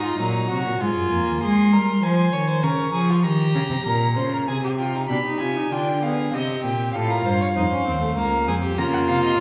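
A close, full-bodied bowed cello carries the bass of this driving, serious baroque-style fugue for string quartet in 3/4 at 98 BPM, cut from a longer piece, beneath two dark, nasal gut-string violins, a distant upper melody and a more forward second line, while a period-style viola with light vibrato plays accompaniment until 1.4 seconds and returns at 5.1 seconds as the music moves into its second section, all set in a reverberant recital hall heard from further back in the room.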